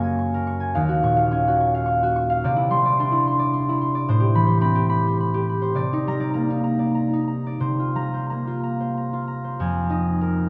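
A concert harp, thumb-plucked and ringing, sits up front and carries this graceful, dreamy classical piece entirely on its own, spanning a range from Eb2 to Db6. The playing moves in a rubato 3/4 at roughly 89-109 BPM, tuned slightly high at A4 = 441 Hz, giving the music an unhurried, floating lilt. Its harmony drifts through rich extended colors, opening on Gbadd9 and wandering through Ebm9, Cadd9, Am9 and Cm9 before a C7sus4 leads to Fm11 at 9.6 seconds. Close, detailed microphones capture the instrument's warm acoustic tone, while light reverb adds a gentle halo. This brief 10.5-second excerpt is cut from a longer piece.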